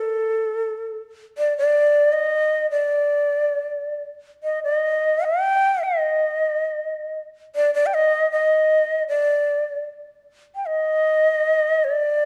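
An austere, calm fragment of Japanese traditional music, this rubato piece cut from a longer work features a breathy, end-blown bamboo shakuhachi playing solo and up front from 0.0 to 12.3 seconds, its tongued, vibrato-touched tone ranging from A4 to G5 within a wet recital-hall reverb and a dark, warm production, with a new section arriving at 10.6 seconds.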